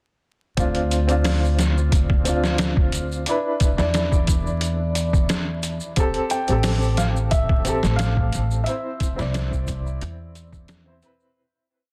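At 0.6 seconds this smoky, melancholic trip hop piece opens with its full groove: a gritty, pitched-down sampler-style drum kit sits up front, playing a looped breakbeat with edits, a thumpy kick and a medium-tuned snare, re-recorded in a small room. A woody pizzicato upright bass with steel strings shares the foreground, stretching out long gliding notes beneath a polished upright piano that plays closely voiced held chords with syncopated pushes, colored by tremolo and tape echo. Bright, saturated maracas shake in the background. At 6.3 seconds a felt-muted upright piano enters with a soft, intimate, motif-based melody of call phrases, trailed by dub echo. A fade-out begins at 7.8 seconds, and the whole piece carries light reverb, vinyl crackle and a dense, heavily limited modern master.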